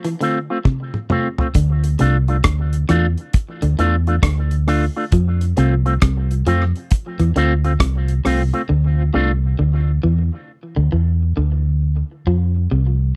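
A dry, close recording with a 1970s studio feel frames this heavy, hypnotic dub reggae excerpt, where a damped acoustic drum kit with a tight kick plays a fill before the round, foam-muted fingered bass enters at 1.6 seconds. A bright, twangy picked guitar through an envelope filter and tape echo sits up front as accompaniment, while a slightly broken-up guitar riff carries spring reverb and tape echo. The drums drop out at 8.7 seconds, and the dark, punchy bass and the riff guitar carry the closing seconds.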